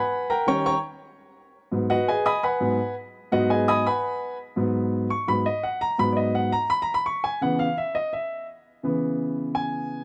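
A solo concert grand piano carries this fiery, sultry jazz excerpt, its open, up-front tone rich with deep bass across a range from G#2 to D#6. Over a straight 4/4 feel, the harmony moves from a D#7#9 chord at 0.3 seconds to G#m7 at 1.7 seconds and then C#m7 at 7.4 seconds. The dry, close sound has the intimate character of a 1970s studio session.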